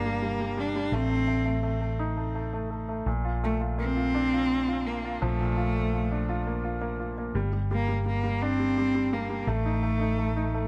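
A bowed, smooth solo cello carries the melody with a touch of delay from the opening moment, joined at once by a clear, polished baby grand piano and a round, punchy hollow-body electric bass in this swaying, heartfelt six-eight pop ballad in Bb major at 56 BPM, all three parts up front in a light studio reverb as the harmony moves from Gm through Bbmaj7 to a closing F7/A in a brief excerpt cut from a longer piece.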